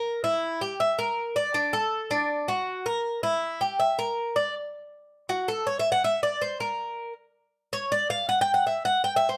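Latin dance music at 160 BPM in 4/4 with a warm, danceable mood, this short cut from a longer piece features a lone acoustic Cuban tres, up front and picked on bright, metallic double strings with some octave doubling, ranging from D4 to G5 in a moderate studio reverb, moving into a new section at 4.5 seconds.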